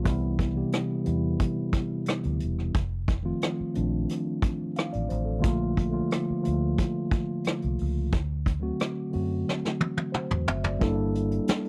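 A dry, close 1970s-style studio sound frames this smooth, cinematic soul excerpt, where a mellow, up-front tine electric piano plays accompaniment over Cmaj7, F7, Bbmaj7 and D7 to a closing Gm69, a dark, round, foam-muted fingered electric bass holds the low end, and a brush drum kit with a punchy kick and rolled-off top sets the pulse before a drum fill from 9.5 to 10.8 seconds.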